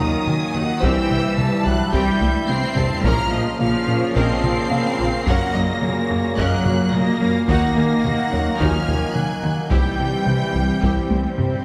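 A straight 4/4 pulse from a taiko ensemble struck with hard sticks in the background, with fills at 2.2 and 11.1 seconds, drives this tense, relentless hybrid orchestral and electronic film-score cue, where a round, deep analog bass riff and bowed cellos carry the low end over distant double basses, lush high violins sing the melody above a smooth second violin line and a focused, faint viola accompaniment, clear trombones, warm French horns and a hollow, flute-like pad hold sustained chords, a harp-like synth pluck spins very quiet arpeggios, a felt-muted upright piano adds dark, intimate texture, and an electronic swell arrives at 10.9 seconds, the whole set inside a wet scoring-stage reverb.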